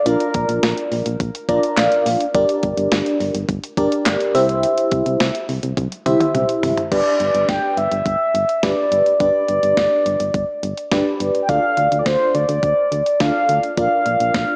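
A mellow, horn-like synth lead with a round, warbling vintage tone, chorus and analog delay carries the melody of this cool, nocturnal synth-pop excerpt at 105 BPM, sounding briefly at the start and returning at 6.9 seconds over a tremolo-laden FM electric piano with phaser, a punchy, dark FM bass and a clean 12-bit drum machine with thumpy kick, handclaps and toms, all set in a dreamy, plate-reverb-soaked mix with a small-speaker sound.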